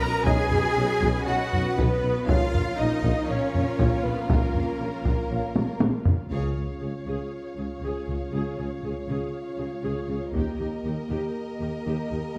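Cut from a longer epic orchestral film score in Db mixolydian at 119 BPM, this triumphant, majestic passage opens on a lush bed of bowed strings: two vibrato violin sections carry the melody and a focused second line, while a close, rich viola section, a smooth cello section, a woody double bass section and a mellow tuba fill the middle and low end. Heavy-stick taiko drums sit up front with a vintage, band-limited sound from 0.3 s, joined by distant, dark French horns, as a separate string section holds sustained chords until 6.3 s, when a drum fill lands on a full-band accent and the harmony moves from Cbadd9 and Bbm to Db. The drums return briefly at 10.3 s under a shift to Eb, all set in a moderate scoring-stage reverb.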